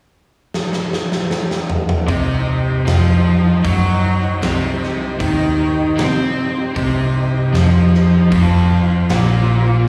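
Heard through a live venue's PA with light reverb, this gritty, brooding blues rock power trio and southern rock excerpt moves at a straight 77 BPM in C minor, opening with a drum fill at 0.5 seconds on a big, natural acoustic kit with a punchy kick and medium-tuned snare. At 2.1 seconds a crunchy, double-tracked guitar riff with slapback echo comes in up front, joined by a dark, round, foam-muted fingered bass and a thick tonewheel organ holding sustained chords through a slow rotary speaker with a touch of drive. The music sits on a Cm chord before shifting to F5 at 8.3 seconds.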